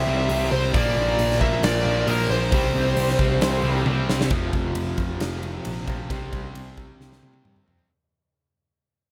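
A smooth lead guitar melody with slapback echo opens this swaggering, anthemic hard rock excerpt, backed by picked guitars in the background: one crunchy with tremolo, one heavy and high-gain, and one double-tracked and overdriven. Beneath them sits a dark, round hollow-body bass, and a huge arena drum kit with a punchy kick and bright cymbals arrives at 0.3 seconds. The lead drops out at 3.8 seconds and the double-tracked guitar soon after, and a drum fill leads into a second section that fades out, with a final fill under light studio reverb.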